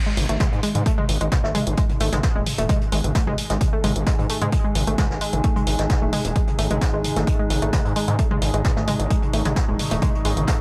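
Set in a digital ambience, this short cut of driving peak-time techno at 131 BPM feels relentless and industrial, anchored by a punchy, tape-warm electronic kick sitting up front and a gritty, nasal synth bass with sidechain pumping. A detuned analog pluck riff carries chorus, tube saturation and dub echo, while an analog drum machine adds hi-hat and toms, and a jazz brush kit with hi-hat and snare lingers in the background. A very quiet metallic, eerie FM drone enters at 0.7 seconds, and a warbling, nostalgic pad joins at 2.0 seconds with its own pumping and built-in reverb.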